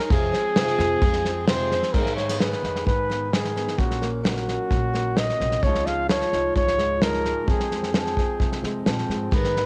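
Anthemic and uplifting, this indie folk piece builds its arrangement over a straight 4/4 pulse in a short section cut from a longer work. A mellow, close-miked trumpet carries the melody throughout in a classical style, sitting up front with a touch of analog delay and cassette tape coloring. A picked, plugged-in twelve-string acoustic guitar opens with a shimmering, octave-doubled sparkle from fresh strings, handing off at 2.0 seconds to a fingerpicked steel-string acoustic guitar with a bright concert tone, before the twelve-string briefly returns at 9.3 seconds. Beneath them, a pizzicato upright bass with gut strings gives a woody, thumpy foundation, while a natural country drum kit with a punchy kick, medium-tuned snare and crash cymbal sounds dark and smooth, its top rolled off and placed up front. The harmony moves from Fm through Abm, Gb/Bb and Dbadd9 back to Fm, and the whole piece carries the character of a home cassette recording with light reverb.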